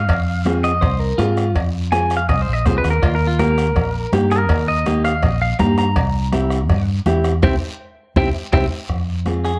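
A bright, twangy clean electric guitar takes a fiery solo from the start, its picked lines soaked in spring reverb, slapback echo and plate reverb, over a round, dark fingered electric bass sitting up front. In this danceable cumbia fragment, a soft-beater bombo, very quiet close congas, ringing cowbell and timbales in the background, and a raspy guiro drive the groove, while a full-bodied fingerpicked nylon-string guitar joins at 0.5 seconds to comp through Fm, Eb and C7. A band accent arrives at 7.4 seconds and a drum fill at 8.2 seconds, all within a dark, lightly reverberant production.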